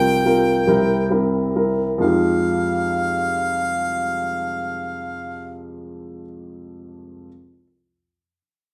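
A clear, close-miked harmonica with light vibrato and a worn baby grand piano with long sustain open together, both up front, in this short cut from a reflective, heartbroken acoustic folk-pop ballad in F minor and 6/8, moving at roughly 43-48 BPM and slowing over the first 2 seconds. The punchy, pop-style harmonica carries the solo melody until 5.5 s, while the piano's accompaniment moves from C7sus4 to C7 and settles on Fm9, ringing on until 7.3 s. A wet studio reverb surrounds the rough home demo mix.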